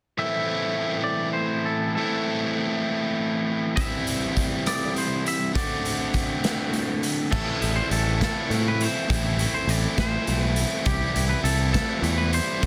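The recording has a dense, heavily limited modern master with light reverb, and this excerpt of 6/8 indie rock feels moody and restless. From the start, a biting, warm overdriven guitar riff sits up front alongside a clean, fingered twangy guitar melody with a scooped tone and slapback echo, placed lower in the mix. At 3.8 seconds a raw garage drum kit enters, saturated and gritty with a rolled-off top, bringing a punchy kick, medium-tuned snare, rim clicks, hi-hat and crash cymbal in a bright, pumping stone room. A direct, up-front picked electric bass arrives at 7.3 seconds, as the harmony returns to Am after a pass through C and D7. The last stretch moves from Am to C, with all four parts playing together through the end.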